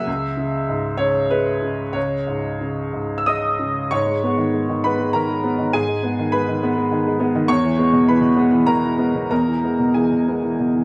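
A clear, worn baby grand piano plays alone in this wistful, intimate neoclassical minimalist fragment, its open tone and long sustain sitting up front with a touch of slapback echo. Moving in a rubato three-four, it opens on C# minor, shifts to G# minor at 3.9 seconds and settles onto E at 7.5 seconds, framed by a modest booth ambience in this brief cut from a longer piece.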